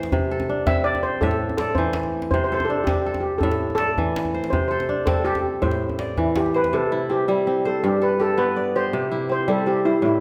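Bathed in a wet recital-hall reverb, this joyful West African string and xylophone piece in C major moves at 109 BPM in a straight 12/8, with a bright, crisp, fingerpicked kora ringing out arpeggios up front throughout, a deep djembe struck with hard hands in a small room until 6.7 s, and a shimmering, metallic steel pan played with medium rubber sticks carrying the lead melody from 0.7 s in a boxy small room as the harmony shifts from Am-tinged passages to a brighter C and G turn.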